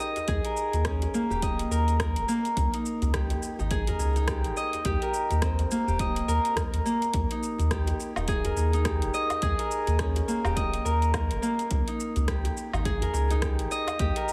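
Organic downtempo with an earthy, swung feel, this short cut from a longer piece rests on an up-front, fingerpicked Celtic harp whose ringing arpeggios carry a gritty vintage-sampler edge and delay over a chord cycle that begins on Eb7sus4. Underneath, a round sine sub bass with sidechain pumping sits alongside a punchy, overdriven electronic kick. A layered deep house kit of metallic hats, rim click, shaker and woodblock shares that overdrive and small-room ambience, while a tight, cracking djembe with metal rattles sits in the background, all bathed in a dreamy plate-reverb haze.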